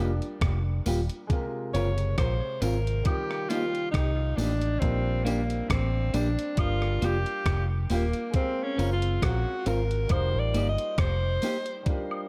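A breathy, intimate alto saxophone solo with vibrato and tape echo leads this romantic, smooth lovers rock reggae excerpt at 68 BPM with a lilting sixteenth-note swing, floating over a long-sustaining grand piano, slightly broken-up guitar stabs trailing dub echo, a round, foam-muted electric bass up front, a thumpy sampler-style drum machine of kick, hi-hat and rim click entering at 0.2 seconds, and background tambourine and woodblock joining at 0.9 seconds, all moving through Gm7, Gbmaj9#11, F9sus4 and Bb6 in light reverb.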